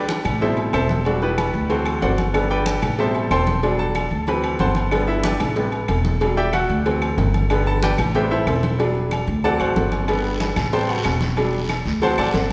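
A wet, reverberant hall sound surrounds this joyful, sunny salsa fragment in G major, moving at a straight 186 BPM in 4/4. Up front, a bright baby grand piano carries the accompaniment and takes a solo across the whole 12.5 seconds, its brilliant, intimate tone showing short sustain and audible action noise. Beside it, a pizzicato upright bass on gut strings sounds woody, dark and thumpy, while the harmony cycles through Am7, Em7, D7 and G. Behind them sit hard-handed congas with a thin, damped skin and a vintage, band-limited character, along with a round, low-tuned cowbell and ringing metal-shell timbales and agogo bells. Very quiet claves click close and dry, and a raspy guiro joins at 10.1 seconds for the final stretch.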